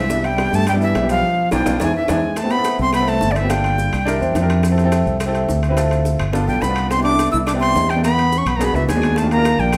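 A breathy, reedy jazz flute carries the melody up front, with a growling, raspy trombone shadowing it further back, both dropping out from 4.4 to 6.5 seconds in this sunny, lively Afro-Cuban jazz cut at 212 BPM in C major. A punchy fretless electric bass and a clear upright piano with audible action noise drive the changes from Cmaj7 toward a closing Ebmaj9. Tight high-tuned bongos, ringing metal-shell timbales, grainy maracas and saturated claves fill out the groove, with a band accent and drum fill before 2.4 seconds, all set back in a large, wet studio reverb.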